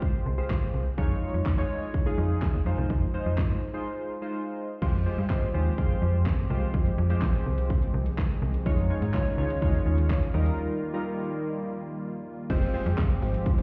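Chorused retro synth keys with tremolo and sidechain pumping open this energetic, bittersweet dance-pop excerpt alongside an electronic pop drum kit with a punchy kick, fat snare, metallic hats, handclaps, shaker and crash, soon joined by a snappy, up-front FM slap-like bass, while a smooth, detuned analog pad enters at 5.4 seconds and a grainy egg shaker is barely audible from 12.5 seconds, all heard muffled as if through a wall in a stone room.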